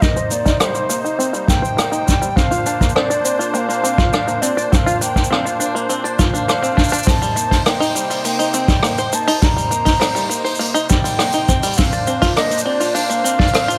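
A straight 4/4 groove from a punchy, up-front kick drum and a vintage brush kit of hi-hat, rim click and shaker gives this delicate, pastoral folktronica excerpt its gentle pulse, with the kick dropping out at 13.5 seconds. Over it, a bright, airy wooden flute carries the melody with vibrato, a soft attack and a touch of delay, while a twangy, fingerpicked banjo plays percussive arpeggios through a low-pass filter sweep and delay. A shimmering, band-limited musette accordion holds sustained chords that move between Cm7 and Bbadd9, all set in a light, small-room reverb.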